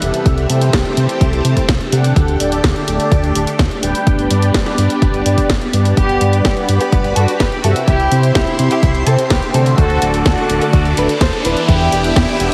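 A chamber violin section carries the melody from 6.0 seconds, its bowed sul tasto tone intimate and close with light vibrato and a soft attack, set up front and trailed by delay. This nostalgic, bittersweet italo disco passage, cut from a longer piece, moves at 126 BPM in a straight 4/4 over chords running from C6 through Dsus4, G, C and D to Em7. A swirling, vintage string machine holds sustained chords in the background, coloured by ensemble chorus and phaser, while mellow synth brass plays detuned, brassy stabs with a filter sweep, vibrato, chorus and tape echo. A round analog bass with tube saturation gives a deep, dark low end, and a house kit's cracking snare and hi-hat sit alongside a punchy electronic kick, both tape-tinged and re-recorded in a large room. A very quiet riser enters at 8.5 seconds, and the mix sits in a lush hall reverb with a heavily compressed radio sound.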